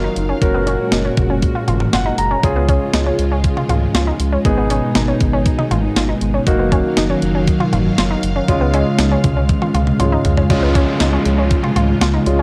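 A straight, driving 4/4 pulse at 119 BPM from an up-front, thumpy 12-bit drum machine with cowbell, hi-hat, snare and toms anchors this cool synth-pop excerpt, where an intimate grand piano with audible action noise, mellow string-machine cellos under ensemble chorus, a nasal, wave-folded pluck arpeggio with analog delay and a round, deep analog bass move through Gbadd9, Db, Abm and Ebmadd9/Gb, with a piano fill at 1.7 seconds, a drum fill at 9.5 seconds and a downlifter entering at 10.5 seconds, all in a dry, gritty hardware recording.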